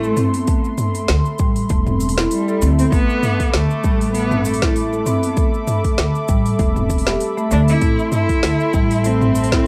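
Organic downtempo with an earthy, meditative mood and a lightly swung 4/4 groove, cut from a longer piece. A bowed cello carries the melody with a soft attack, vibrato and portamento, its rich, expressive tone trailed by analog delay and plate reverb. Beneath it, a detuned sawtooth pad holds smooth, chorused chords with a long release and sidechain pumping, while a marimba played with soft mallets spins mellow, round arpeggios through tape echo. A pizzicato upright bass gives a woody low end that also pumps, and a layered deep house kit of smooth hats, shaker, snare and toms is joined at 0.5 s by a deep electronic kick. The harmony rests on a single Amadd9 chord, and the home cassette recording with moderate room reverb lends the drums a tape-coloured grain.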